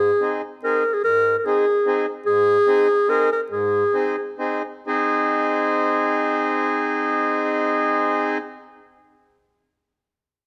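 A warm, close-miked clarinet and a reedy, dark accordion open together in Ab major on this jolly, festive alpine folk excerpt, set in a swung, rubato 3/4 at 127-148 BPM and tuned to A4 = 435 Hz. The clarinet carries a solo melody in a classical style, up front over the accordion's full, smooth, dry-tuned accompaniment, and the music slows from 2.3 to 4.9 seconds. The clarinet stops at 4.4 seconds, leaving the accordion alone until 8.4 seconds in a moderate recital hall reverb.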